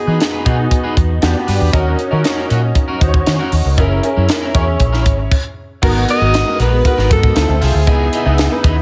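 A breathy alto saxophone with tape echo carries the melody in this bittersweet, urban slice of polished 1980s jazz-funk pop at 117 BPM in G# minor, over a clear baby grand piano, a twangy electric guitar riff at the edge of break-up, a dark, foam-muted fingered bass up front, and a crisp fusion kit with gated reverb, while a very quiet mellow horn section appears briefly at 4.5 seconds, a band stop lands at 5.3 seconds, and a swirling, phased string machine enters at 5.8 seconds.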